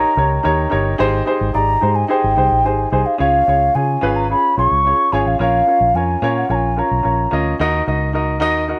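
Danceable and warm, this short excerpt cut from a longer uptempo 1960s-style soul piece moves at 109 BPM in a straight 4/4, settling into Db mixolydian from 3.2 s as an airy, hollow clay ocarina carries the vibrato-tinged, tongued melody until 7.3 s over an intimate baby grand piano with audible action noise and a dark, round, foam-muted electric bass, all under light reverb, with chords moving from Eb7 and Abmaj7 to Db, Bbm and Ebm.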